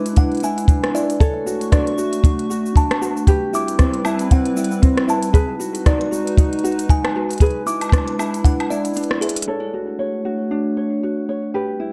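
Folktronica at 116 BPM in D lydian, with a light sixteenth-note swing and a hopeful, delicate mood, built on a detuned, warbling tape-like pad holding mellow chorused chords under an up-front, thumb-plucked ukulele playing arpeggios through tape echo. A tinkling, slightly out-of-tune music box carries a second line, while a punchy, dry acoustic kick sits forward against an overdriven organic electronic kit of smooth hats, rim click, shaker and woodblock re-recorded in a large room. The kick falls silent at 8.6 seconds, and after a brief break and a drum fill at 9.2 seconds, the kit and music box drop away at 9.5 seconds, leaving the pad and ukulele on a Dmaj7 chord in this dark, nostalgic-sounding excerpt.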